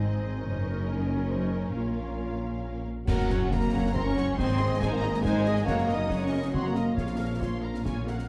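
A tight French horn section holds sustained chords through this soaring, triumphant heroic film-score cue at 138 BPM in 3/4, over close bowed cellos and distant double basses, with a focused viola section in accompaniment, one lush violin section carrying a smooth background melody and another singing a rich second line, while an airy flute section and a warm solo clarinet add brief lines that end at 2.8 seconds before concert snare, bright clash cymbals and bass drum arrive with an accent at 3.1 seconds, all set in a dark, reverberant recital-hall sound.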